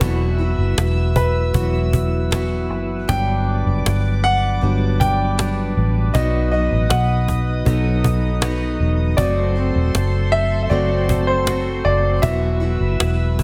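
Up front, a round, punchy, foam-muted electric bass anchors this heartbroken, longing pop ballad at 79 BPM in E minor, as a polished grand piano carries the melody over bright tine electric piano, a woody close cajon, picked steel-string acoustic guitar arpeggios with finger squeak in the background, and a shimmering chorused pulse-width pad, all drifting through Esus2, Gmaj7, B and F#dim in light reverb.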